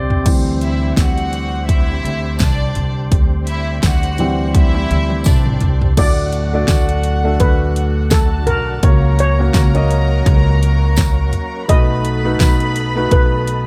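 A punchy, up-front pop drum kit with a fat snare and metallic hats drives this dramatic, piano-driven pop excerpt, opening with a fill and adding another just before the second section. A concert grand piano with deep bass takes a solo through the opening section, while a woody pizzicato upright bass sits up front and a smooth tonewheel organ with chorus vibrato and key click holds chords in the background. A rich violin section enters almost at once with a soft, distant, floating sound touched by digital delay, and a jingly tambourine hangs back in the mix. At 6.0 seconds a shimmering, metallic steel pan takes over the melody as the harmony moves from D7sus4 to D, F#/C# and B7. The 16th notes carry a light swing, and light reverb gives the sound a polished finish.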